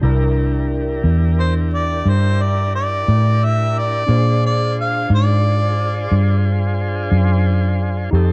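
A short fragment of laid-back, gritty blues in 12/8 opens with a dark, round, punchy electric bass, foam-muted and up front, alongside an organ and an electric piano. The tonewheel organ holds smooth, clean sustained chords through a slow rotary speaker with a touch of vibrato. Behind it, the tine electric piano sits in the background, its barky, overdriven tone pushed through a combo amp and colored by analog chorus. At 1.4 seconds a mellow harmonica takes the solo melody up front, with a soft attack, light vibrato, scooped notes and a smooth top in a jazz-inflected style, before dropping out at 6.4 seconds. The harmony moves from C7 to Bb7 at 4.1 seconds, and the whole home-made cassette recording carries a digital ambience.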